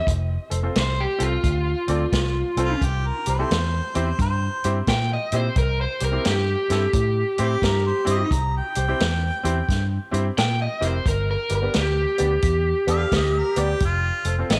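A lightly reverberant studio sound frames this gritty, swaggering electric blues shuffle at 87 BPM in C mixolydian, swinging along over F, C and G chords in a short cut from a longer piece. Up front, an overdriven, compressed, picked electric guitar carries the melody over a dark, round, foam-muted bass and a natural-sounding vintage drum kit with a tight kick, medium-tuned snare, hi-hat and a rolled-off top, while a bright, woody upright piano adds polished accompaniment. From 2.6 seconds, a distant, roomy harmonica joins with a jazz-style second line full of light vibrato and scooped notes.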